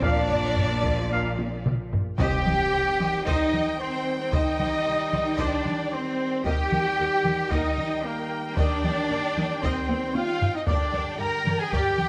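This excerpt of an epic orchestral film score moves at 113 BPM in a straight 4/4 in C minor, with a heroic, dramatic mood. A compressed, saturated taiko ensemble drives the whole passage, and a drum fill at 1.4 seconds leads into the fuller second section at 2.2 seconds, where a short timpani hit on medium mallets coincides with a huge, dark impact sitting in the background. Up front, a clear, focused cello section carries the bass with vibrato, supported by a distant, even double bass section, while a clear viola section fills in the accompaniment. Two lush violin sections sit further back: a rich, soft-attacked one carries the melody, and a dark one with portamento and a smooth top plays a second line. The brass is layered in classical style, with mellow, vintage trumpet stabs, bright trombone chords with light vibrato, and a very quiet, roomy French horn section holding sustained chords. 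The harmony moves from Bb to Cm, then Eb and Gm, with a second drum fill at 9.9 seconds, all set in light reverb with close, detailed miking.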